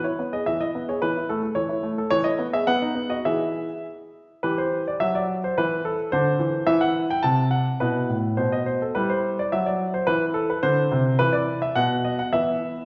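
Heard through a wet recital-hall reverb from further back in the room, with the highest frequencies rolled off, this cheerful, elegant excerpt of a classical-period piano sonatina in 2/4 features a clear, present baby grand playing solo with rubato, moving from a bright opening into a more shadowed passage at 4.4 s before settling on a bare E5 chord at 12.3 s.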